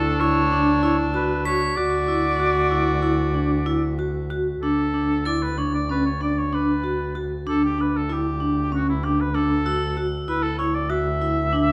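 Shimmering and playful, this contemporary chamber piece moves in 9/8 at 191 BPM counted in eighths, set in D major and tuned slightly low with A4 at 439 Hz. A warm, classical-style oboe carries the solo melody up front, its vibrato tone sounding both distant and roomy, while a bowed viola with a reedy gut-string, period-style voice adds a second line until 4.3 seconds. A vibraphone struck with medium hard mallets spins metallic, ringing arpeggios with a medium motor vibrato throughout. Beneath them, a single bowed double bass holds a rich, focused D2 with vibrato, placed up front. From 1.5 to 10.3 seconds, bright, bell-like crotales played with brass mallets sparkle high in the background. The harmony rests on D before moving to D5 at 4.6 seconds and settling on Dsus2, all bathed in a wet recital hall reverb.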